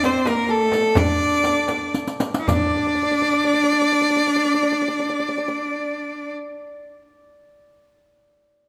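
A Persian modal ensemble in a straight 6/8 opens all at once, with a clear, smooth violin singing the melody up front and a biting, intense cello with vibrato carrying a second line beside it, while a shimmering hammered santur rings along underneath. Tight tombak, close riq with dark jingles and a small, bright frame drum set back in the mix drive the passionate, festive mood at 73-90 BPM as the tempo slows, then the drums play a fill and drop out at 2.7 s. The strings carry on briefly before the santur rings out alone to 7.9 s, all set in a moderate scoring stage reverb, in this brief cut from a longer piece.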